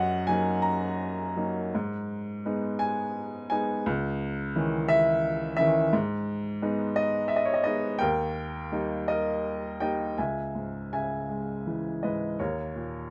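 Reflective and melancholic, this short passage of lyrical classical solo piano is cut from a longer piece and moves at a slow, unhurried pace in a lilting 6/8 with a free, rubato feel. A single upright piano carries everything across its 13.1 seconds, ranging from the low bass to the upper treble, with a woody, vintage character and a smooth, clear tone whose notes ring on with long sustain. The harmony stays in a dark minor colour, settling on a major chord at 8.0 seconds before the music turns to a new section at 10.2 seconds, where richer seventh chords unsettle the close. Close, detailed miking places the instrument up front, while light reverb adds a touch of air around it.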